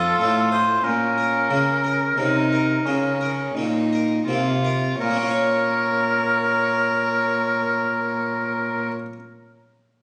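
Baroque-style sonata movement with continuo in Bb minor, solemn and flowing at a slow 41-48 BPM in 3/4, where a rich gut-string violin carries the melody over a clear, punchy oboe second line with vibrato, an airy, brilliant Flemish-style harpsichord accompaniment, and a dark, bowed cello bass, all in a recital hall reverb heard through a phone in the room, slowing down over the first 5.0 seconds as an F7 chord resolves to Bb minor before the harpsichord rings on alone until 9.2 seconds of this short cut from a longer piece.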